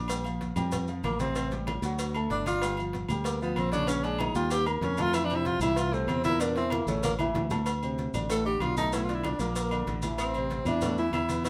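A sunny, lively Afro-Cuban jazz piece at 190 BPM opens with an intimate concert grand piano, its action noise audible and its low end deep, over a bright, growly fingered electric bass up front. Ringing, saturated agogo bells and timbales join them, along with grainy maracas, while low-tuned congas and round cowbell and bongos sit in the background. A tenor saxophone enters at 1.0 seconds with a warm subtone and scooped notes, soloing up front through chords such as Bbsus2, Gm7 and C13b9, and a drum fill at 6.9 seconds comes just before the opening section repeats, all set in moderate studio reverb.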